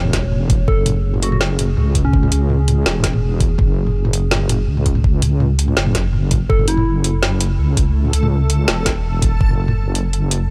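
A dry, close sound carries this dark, cinematic half-time drum and bass excerpt, cut from a longer piece and sitting on a single minor chord throughout its drop. Up front, a deep, detuned wobble bass with chorus anchors the low end, while a knocking, tape-warm electronic kick hits alongside a layered kit of woody snare, metallic hats and toms that sounds re-recorded in a small room. In the background, a moody analog pad built from square and sawtooth waves with a sub octave and ring modulation holds sustained chords under sidechain pumping and chorus until 6.5 seconds. A round, keys-like FM lead with vibrato, chorus and digital delay plays brief, gentle melodic phrases, first at 0.7 seconds and again at 6.5 seconds. From 7.7 seconds a reversed, granular texture swells in dreamy, bright waves through its own reverb until the end.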